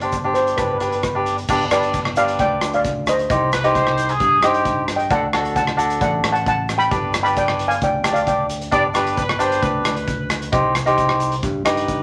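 A straight 4/4 calypso groove at 133 BPM drives this dramatic excerpt, where a modern studio drum kit with a punchy kick, crash, hi-hat and rim click sits in a pumping room alongside a round, dark fingered electric bass, a crisp, picked cavaquinho up front, and a grainy egg shaker tucked in the background, while a shimmering lead steel pan carries the melody until 8.6 seconds and a tight, clear vintage horn section with light vibrato adds a second line at 3.5 and 8.7 seconds over chords moving from G through C minor and D, all set in a moderate club reverb.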